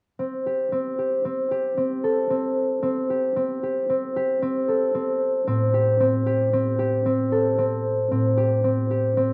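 A worn, warbling cassette sound with a drifting pitch colours this short cut from a longer piece, set in a moderate recital hall that lends a 1.6-second tail. It is contemporary chamber music in an uneven 5/4 meter at 114 BPM with a straight feel, pensive and hypnotic in mood, resting on a single Am7 chord in A minor. An acoustic concert harp plays up front from 0.2 seconds, thumb-plucked arpeggios between C4 and A4 giving a mellow, ringing tone. At 5.5 seconds a tine electric piano enters as the bass, sitting on A2 with a clean tone through a combo amp, and both parts carry on to the end at 9.3 seconds.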